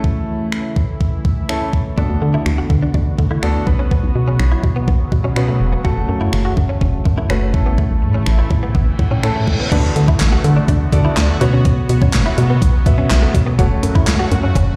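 This euphoric, upbeat dance-pop excerpt opens with a clear, vintage grand piano and a bright, detuned sawtooth pad with chorus, both pumping to the sidechain, over a gated 80s drum machine whose thumpy kick, overdriven gated-reverb snare, hi-hat, handclaps, finger snaps and crash sit up front. At 2.0 seconds a hollow, dark, organ-like FM bass joins up front, along with a clean, compressed, direct-recorded electric guitar riff with ensemble chorus, as the harmony moves through A, D6, Bsus2 and F#m. A piano fill from 8.8 seconds and an electronic reverse cymbal at 9.0 seconds lead into the second section at 9.7 seconds, with the mix set in a large digital ambience that sounds like a big sound system playing in a bare room.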